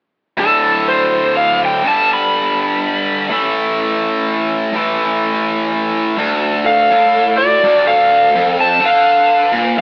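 An overdriven slide guitar carries the melody up front, its bright tone trailed by tape echo, while a tight, double-tracked distorted guitar picks a low riff beneath it in this swaggering, driving swung rock cut from a longer piece. At 6.6 seconds a dark, smooth lead guitar slips in far back with a second line, as the chords move from D5 and G through A5 and back to D5 before closing on a rootless G7. A stone room's moderate reverb and the rough rehearsal-room capture, with warm saturation and an AM radio tint, give the whole a gritty, boxy feel.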